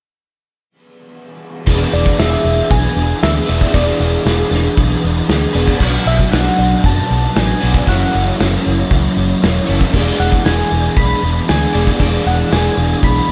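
A straight 4/4 pulse at 116 BPM drives this wistful, dreamy shoegaze and dream pop fragment in E mixolydian. From 1.7 s, a loose indie drum kit sits up front in a small, pumping room, with a tight kick, medium-tuned snare, hi-hat and crash, beside a dark, foam-muted vintage fingered bass, while two overdriven semi-hollow guitars play picked, hollow-body riffs, one thickened by ensemble chorus and the other trailed by reverse reverb, and a very quiet, clean, mellow electric guitar adds fingered arpeggios. From 1.9 s, a soft, round FM synth lead with a keys-like, decaying tone carries the melody through chorus and slapback echo over E7, Bm and F#7, all framed by light reverb and a warm production.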